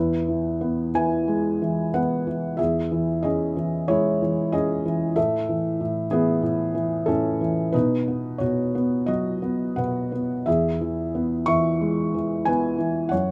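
A felt-muted upright piano opens the recording alone, its soft, mellow tone sitting up front and close enough that the action noise of the instrument is clearly audible. This is lyrical solo classical piano in E major, with a relaxed, intimate mood and a rubato feel in 4/4 that drifts between roughly 85 and 97 BPM. The piano spans from E2 up to C#6, moving through a gentle progression of Eadd9, C#m/E, A and Badd9 before settling back on E at 10.5 seconds. Light reverb surrounds the instrument, and the production leans dark and warm, keeping the muted hammers hushed and rounded. The piece is cut from a longer work and runs for 13.3 seconds.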